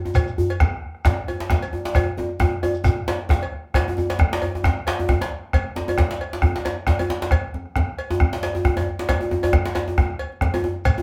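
A round, up-front bombo anchors this earthy, driving West African drum ensemble excerpt in a swung 4/4, joined by a medium-tuned djembe with metal rattles struck with hard hands, a deep, dry second djembe set back in the mix, a metallic cowbell, and a grainy, mellow shekere that drops out at 3.0 seconds, partway through a drum fill that leads into the next section at 3.7 seconds, all captured live together in a small, reverberant room.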